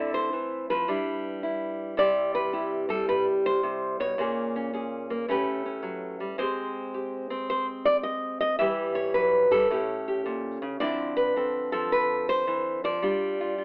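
Solo jazz on a lone nylon-string guitar, swinging at 109 BPM in 4/4 with a relaxed, warm lilt in C major. The guitar sits up front, fingerpicked with a classical touch, its full-bodied acoustic tone catching an occasional finger squeak as it moves between low A2 and high E5. A brief opening phrase on Dm9 and G6 gives way at 2.0 seconds to a longer passage that travels through Cmaj7, Bbm7, A9 and Abmaj7 before circling back through Em and A7b9 to Dm9, settling on an open G7 near 13.0 seconds. Light reverb surrounds the playing, while a thin, boxy telephone-like filtering colors the sound. This short excerpt is cut from a longer piece.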